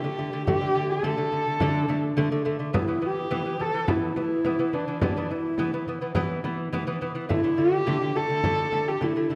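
A straight, steady 4/4 pulse drives this galloping, vast fragment of Mongolian folk music. A husky, woody horsehead fiddle carries the melody up front with vibrato and portamento, while a delicate, fingerpicked nylon-strung lute plays bright arpeggios beneath it. A small frame drum joins just after the opening, and the harmony moves from D5 to E5 at 2.7 seconds and back at 7.3 seconds, all set in a dark production with a wet concert-hall reverb.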